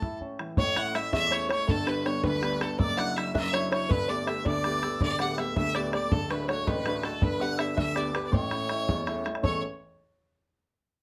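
Cheerful and bright, this Celtic jig in A mixolydian moves at 108 beats per minute in a straight 6/8, cut from a longer piece. A single bowed fiddle carries the melody up front with a biting, intense edge and light vibrato, though its tone sits a little distant. Beneath it, a woody, polished upright piano provides the accompaniment, present and up front. In the background an open-back banjo adds a fingerpicked second line that is twangy and plunky, while a tin whistle, tongued with an airy chiff and lifted highs, adds another second line higher up. A damped, tight bodhran keeps the percussion close and dry, all five parts playing together as a band in one room with moderate studio reverb, as the chords pass from A through G and D before returning to A near 8.3 seconds.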